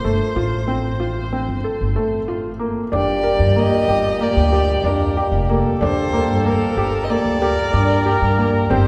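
A felt-muted upright piano sits up front with soft, mellow arpeggios, its thin felt and audible action noise giving this urgent, hypnotic piece of contemporary chamber music an intimate, close-to-the-keys character. It moves at 187 BPM in eighths within a straight 9/8 metre in G minor, beside a woody pizzicato upright bass on steel strings that is the loudest voice, and a dark, distant bowed violin singing a vibrato-laden, expressive melody with portamento. The opening rests on a rootless Dm7, and at 2.9 seconds the harmony shifts to Gmadd9 as three more parts arrive. A dark solo viola adds a second line with light vibrato, an airy bow and a smooth top, while a reedy, breathing pedal harmonium holds full, dry chords in the background. A deep frame drum played with soft hands stays very quiet and close. The room is a church or concert hall with a long cathedral reverb of about 4.7 seconds, and the passage is cut from a longer piece, ending at 8.9 seconds.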